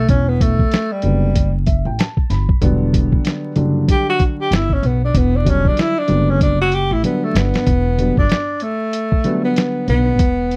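A swung sixteenth-note groove in 4/4 drives this nocturnal, smoky jazz-hop fragment, cut from a longer hip hop piece. A compressed, pitched-down sampler-style drum kit sits up front with a thumpy kick, a medium-tuned snare and hi-hat, all muffled and tape-warm, and it plays a fill from 6.4 to 7.7 seconds. Beneath it, a pizzicato upright bass lays down a woody, dark steel-string foundation, also up front. A breathy tenor saxophone solos through the opening 7.7 seconds, its subtone, soft attacks, vibrato and scooped notes sounding whispered and distant yet roomy, with a slapback echo. A dark baby grand piano enters at 1.0 seconds, mellow, smooth and vintage, with long sustain and audible action noise, and it adds a brief fill shortly after its entry. The close, dry 1970s-style recording is intimate, with a layer of vinyl crackle over the whole.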